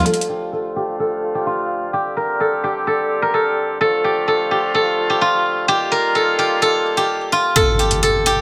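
A half-time trap pulse at 128 BPM in 4/4 drives this brooding, menacing hip hop cut from a longer piece, with electronic hi-hats adding produced, metallic ticks at the very start and again near the close. Up front, a bright steel-string zither played with fingerpicks carries the melody, its silvery, ringing tone shaded by a low-pass filter. Beneath it, a warm woodwind section in a tight, classical style holds sustained chords with light vibrato, also low-pass filtered, moving through Dm, Csus2, Dm and Ebadd9 in D phrygian. A filter sweep runs through the main passage until 7.6 seconds, when the chords give way and an up-front electronic impact hits alongside the returning hats until 8.4 seconds. A moderate scoring-stage reverb with a 1.8-second decay surrounds the parts.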